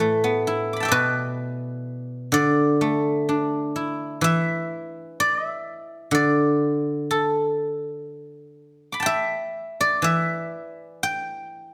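Closely miked with light reverb, this brief passage cut from a longer Chinese traditional piece features a solo guzheng, played with fingerpicks and sitting up front with a silvery, ringing tone, unfolding a flowing, pastoral line in A shang mode at a rubato 60-64 BPM across its 11.7 seconds.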